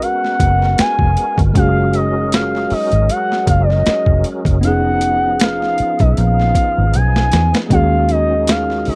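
A gliding, mellow lead with chorus and portamento opens this late-night, introspective neo-soul R&B passage over a worn, slightly out-of-tune electric piano, a fat tonewheel organ turning through a slow rotary speaker, and a gritty, pitched-down boom bap kit with a thumpy kick and high-tuned snare. A dark, foam-muted electric bass joins up front at 0.4 seconds, moving beneath lightly swung chords that shift from Abm9 through Gbmaj13 and Fm7b5 to Ebm7. A drum fill from 6.9 seconds leads into the closing Ebm7 of this dry, close, 1970s-style studio take before it cuts off.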